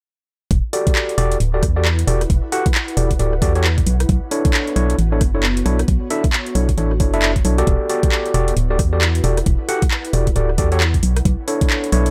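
UK garage in a two-step style at 134 BPM with a swung 16th-note feel, this moody, late-night cut sits in E dorian and moves between Em11 and Bm11 chords. A hollow, organ-like FM bass pumps up front beside a knocking, overdriven electronic kick and a garage kit of handclaps, rim clicks and metallic hats, all starting at 0.5 seconds. A gritty tine electric piano through a combo amp fires stabs with dub echo from 0.7 seconds, while an ethereal, airy pad with ensemble chorus and built-in reverb drifts in the background from 1.2 seconds, all in a light reverb.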